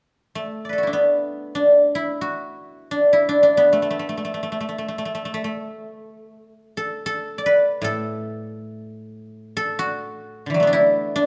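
A solo guzheng carries this brief excerpt of Chinese traditional music, entering at 0.4 seconds and sounding until 11.3 seconds. Played with fingerpicks, the acoustic instrument has a ringing, silvery tone that sits up front in the sound. The music moves in free time, unfolding with a serene, elegant character across a range from A2 to D5. A moderate recital hall reverb surrounds the plucked strings, giving them a sense of space. The passage is cut from a longer piece, offering a short glimpse of its calm, graceful mood.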